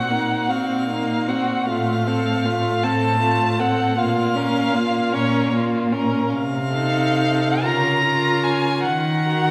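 A string quartet opens together on a Cm7b5 over Bb, setting a solemn, yearning mood in this slow romantic classical movement in Bb minor and 6/8, moving at a rubato 43-53 BPM in dotted quarters. The first violin carries the melody with a rich, smooth and even tone, sitting up front in the high register, while the second violin adds a focused inner line with a soft-edged top. Beneath them the viola supplies close, clear accompaniment, and the cello holds the bass with a warm, smooth sound that also sits forward. Each part is a single bowed player using vibrato, and the harmony passes through F over A, Bb minor and F7 over C before arriving on Eb minor near 8.8 seconds. The quartet is heard in a church or concert hall with a wet, lingering reverb, and the 9.5-second passage is cut from a longer piece.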